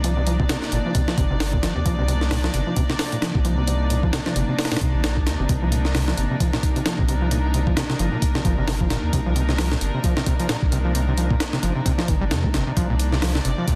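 A squelchy, resonant sawtooth acid bass riff leads this raw, gritty breakbeat excerpt, its distortion, cassette tape coloring and delay shaped by a filter sweep that runs the full 13.8 seconds. Underneath sits a deep, thick sub bass with tube saturation and a fast attack, holding sustained notes in C minor. The sampler-style drum kit is compressed and up front, with a thumpy kick, a high-tuned snare and hi-hats swung at 57% on the 16ths, all at 132 BPM in 4/4 and set in studio reverb. A bowed string section plays sustained chords on a Cm7 harmony, its reedy, gut-string tone and light vibrato roughened by vintage 12-bit sampler crunch and sidechain pumping. The whole passage stays on a single section, with all four parts playing together in a dense, heavily limited modern mix with light digital ambience.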